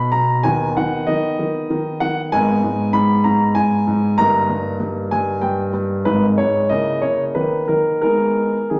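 Graceful and playful, this short cut from a longer piece is a classical-period piano sonatina in a lilting triple metre, played with a supple rubato feel. A clear baby grand piano carries it alone from 0.0 to 8.8 seconds, sitting up front with an open tone and long sustain, ranging from G1 up to B5. The harmony moves from B over D# into G# minor, then through D# over G back to G# minor, before a quicker turn through A# diminished over C# and a bare D# fifth that settles on G# minor at 8.0 seconds. A generous recital hall reverb, about 1.8 seconds long, surrounds the instrument and gives each chord a lingering, airy halo. The effect is of a single elegant phrase caught mid-performance, poised and lightly teasing.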